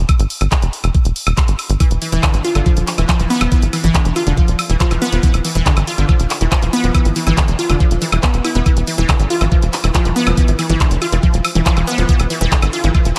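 A tight, nasal sequencer bass with tube saturation opens this driving, intense psychedelic trance excerpt at 140 BPM, joined almost at once by a knocking, tape-tinged electronic kick up front and a layered electronic kit of handclaps, bright hats and woodblock that sounds re-recorded in a small room. At 1.8 seconds a lush, detuned unison pluck riff enters, full-bodied and punchy with sidechain pumping and delay. The mix sits in light digital ambience, with some lossy compression artefacts audible.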